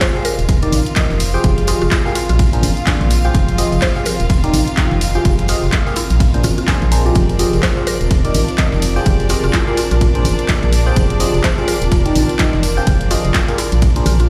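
A swung 4/4 groove at 126 BPM with a punchy, tape-warm electronic kick, an analog drum machine of handclaps, hi-hat and ride re-recorded in a large room, a very quiet gritty breakbeat kit of hi-hat, ride and snare, and background tambourine and congas drives this bittersweet, soulful piano house cut in F dorian, where a hollow organ-like FM bass and a biting, barking FM electric piano riff with phaser and delay pump against the kick, a clear violin section holds intense sustained chords, a woody mallet-like synth pluck with chorus and delay carries the melody in the background, and an ethereal airy pad drifts behind over a looping Ebmaj7, Fm9, Bb9, Fm9 progression, all set in a large studio reverb.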